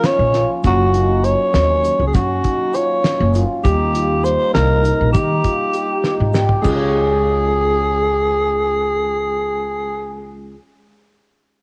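A driving 5/8 pulse at 200 BPM in eighths, straight and intricate, carries this progressive instrumental band excerpt in Db major, moving from Bbm through Gb and Eb to Db. Up front, a growling tenor saxophone takes the breathy, raspy jazz-style melody with scooped notes and vibrato, over a tine electric piano with medium tremolo through a combo amp, ringing handpan arpeggios with analog delay, and a woody pizzicato upright bass entering at 0.2 seconds. A cloth-damped, thuddy drum kit with a fat snare and a very quiet, grainy egg shaker drive the groove until a drum fill at 6.1 seconds leads into a new section, where both drop out by 6.9 seconds, all within a cassette home recording with light reverb.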